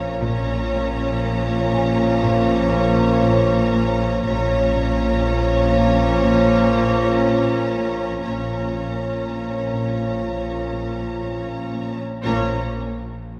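Tense and uneasy, this cinematic suspense cue moves at a slow 60 BPM in a straight 4/4, sitting on a single Bb minor chord in a tuning slightly below standard, and it is cut from a longer piece. A distant, expressive violin section carries the melody high at Bb5 with lush vibrato but sits quietly in the mix, while a second, smoother violin line holds Db5 beneath it and a rich viola section fills the middle. Trombones with a clear, vintage tone and dark, roomy French horns hold sustained chords, as a very quiet cello section plays a riff between Bb2 and Bb3 over a deep foundation of cellos and double basses anchored on Bb. A nasal, detuned, sawtooth-edged drone with a slow attack and its own built-in reverb hums in the background, and a delicate, bell-like celesta adds a faint, sweet shimmer from Bb4 to Bb5. The whole ensemble is heard from further back in a wet scoring-stage reverb, with nearly every part sustaining from the start until the texture ends around 12.8 seconds.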